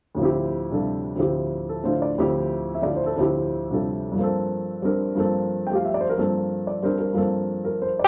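A dark, mellow baby grand piano sits up front in this searching, hypnotic jazz excerpt at 181 BPM in a swung 3/4, comping from D2 to G5 over Dm11 and then Gm11 in D minor, its intimate, short-sustained tone carrying audible action noise inside a wet club reverb.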